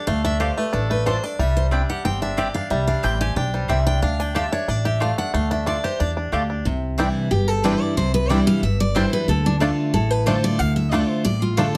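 A bright, jumbo-bodied acoustic guitar takes the melody from 7.3 seconds, up front and bathed in plate reverb, after a full-bodied dreadnought guitar with audible finger squeak has carried a solo stretch through the opening 6.7 seconds and keeps picking its accompaniment to the end. This driving, haunting bluegrass excerpt in straight 4/4 moves between Dm and Cadd9, with a twangy, percussive banjo playing arpeggios with fingerpicks and a woody mandolin adding double-string stabs. Underneath, a dark, thumpy pizzicato upright bass with gut strings sits up front in a moderate studio room.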